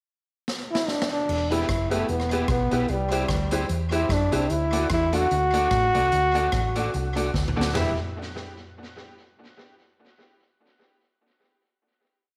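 A clear, up-front trombone carries this energetic, driving ska piece, singing motif-based song phrases with a light vibrato in a pop style. A street-band drum kit opens with a fill at 0.5 seconds, then settles into a ska beat with a side-stick backbeat, its dark cymbals, medium-tuned snare and boomy kick touched with tape echo. A round, hollow-body electric bass enters at 1.3 seconds with a dark walking line as the head moves through E minor, C and D. A twangy electric guitar at the edge of break-up, lightly treated with chorus, chops the off-beats alongside a detuned, jangly honky-tonk upright piano whose stabs also carry tape echo. A second drum fill at 7.3 seconds leads into a final E minor chord, all set in a moderate echo-chamber reverb with small-room ambience.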